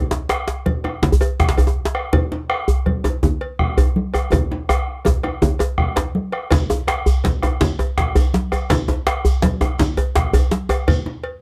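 A pair of djembes opens this festive, earthy West African drum ensemble piece at 110 BPM in a straight 12/8: one tight and cracking with metal rattles, placed up front, the other medium-tuned and struck with hard hands, soon joined by a round, distant bombo, a metallic cowbell and ringing congas. A drum fill runs from 4.3 to 6.5 seconds, after which a grainy, mellow shekere enters from a large-room distance for the closing passage. The sound is close and detailed with little reverb, and this short cut is taken from a longer piece.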